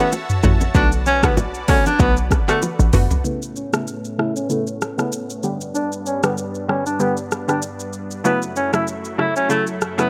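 Joyful and romantic, this afrobeats excerpt sets a breathy, intimate tenor saxophone melody with scooped notes and vibrato up front over a warbling analog pluck and a lush, detuned unison pad, both softened by chorus and a low-pass filter, while the sax trails a tape echo. An electronic afro-pop kit with a deep kick and metallic hats drives the groove from the start, joined until about 3.2 seconds by close, dry bongos and congas and a punchy, tight 808-style bass. A drum fill at 2.6 seconds leads into the second section, where a filter sweep runs to the end as the chords move from Aadd9 through G back to F#m7.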